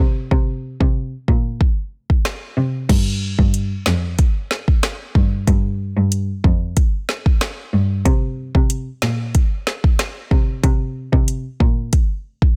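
Dancehall at 93 BPM in a straight 4/4, bouncy and hypnotic, cut from a longer piece, where a single dark, intimate cello carries the bass line with an airy, soft-attack bow, sul tasto tone and vibrato from the start until 11.7 seconds, while an up-front electronic afro-pop drum kit joins at 0.3 seconds with a deep kick, woody snare, metallic hi-hats, rim clicks and crash cymbal, all set in a digital ambience with a dense, heavily limited modern master.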